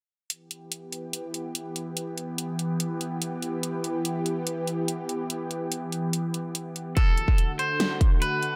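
Heavy wobble dubstep at 144 BPM in a chaotic half-time 4/4 feel in E minor, this excerpt sets a lush, thick, detuned sawtooth-and-square unison pad with chorus, phaser and sidechain pumping over Em against an up-front dubstep kit of hi-hat and huge snare. At 7.0 seconds the chord moves to D as a punchy, layered electronic kick enters alongside a bright, twangy, slightly broken-up electric guitar melody with warbly pitch drift and digital delay, the drums re-recorded in a small room and the mix touched by light reverb.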